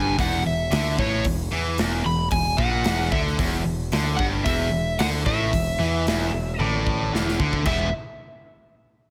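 Cut from a longer piece and lightly bathed in studio reverb, this gritty, raunchy blues rock and southern rock power trio groove moves at 112 BPM in a straight 4/4, with a dark, overdriven slide guitar carrying the melody high above a bright, double-tracked distorted guitar riff up front, a growling, overdriven electric bass, and a big-room acoustic kit with punchy kick and bright cymbals whose fill from 6.6 to 7.7 seconds drives the music onto an E chord.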